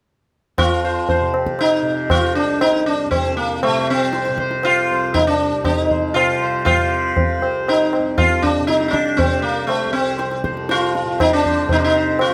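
Solemn and longing, this short Hindustani classical excerpt at 119 BPM in 3/4 sets an up-front, plectrum-plucked sitar, buzzing and shimmering with sympathetic strings as its melody ranges from A3 to C5, over a softly plucked tanpura drone and high-tuned, short-ringing tabla in a small room, all from 0.6 to 12.3 seconds under light reverb.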